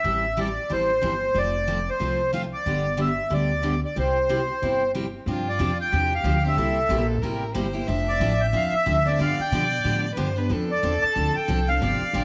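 Set in a moderate echo-chamber reverb with a small-room feel, this lively, charming excerpt of swung acoustic string jazz in the manouche style puts a reedy, mid-forward accordion up front on the melody, backed by a bright, full-bodied picked steel-string guitar with audible finger squeak and a woody, thumpy pizzicato upright bass on gut strings, while a smooth, bowed violin with vibrato joins at 5.3 s to add a second line.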